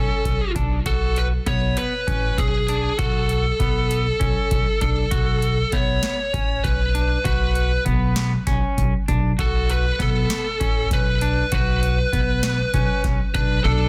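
Set in a driving 7/8 at 197 BPM counted in eighths, this intricate progressive instrumental in B dorian rides on a thumpy, woody upright bass and a booming, overdriven analog drum machine that enters at 0.3 s with a deep kick, crisp snare and metallic hats. A twangy electric guitar at the edge of break-up plays fingered arpeggios with a warbly pitch drift beneath a dark, biting lead guitar that carries the melody up front with overdrive and delay. Light reverb and a dense, heavily limited modern master frame this fragment, cut from a longer piece, over a single B7(no3) harmony.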